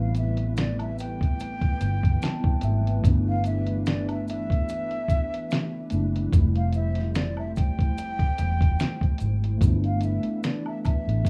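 A swung 73 BPM lo-fi hip hop groove in G mixolydian rides on a muffled, compressed sampler-style drum kit with a thumpy kick, fat snare, hi-hat and finger snaps up front, alongside a dark, round, foam-muted electric bass and background maracas and woodblock, close and dry. A mellow, clean tine electric piano on cassette tape comps through Am9, G69 and Fmaj9, adding a fill from 1.8 to 3.0 seconds, while a hollow, detuned pad with ensemble chorus sustains soft chords behind it. Over this, a breathy jazz flute with vibrato and tape echo sings an expressive, dreamy melody in a small, lightly reverberant room that has the rough feel of a home demo, with the harmony returning to G69 at 9.6 seconds.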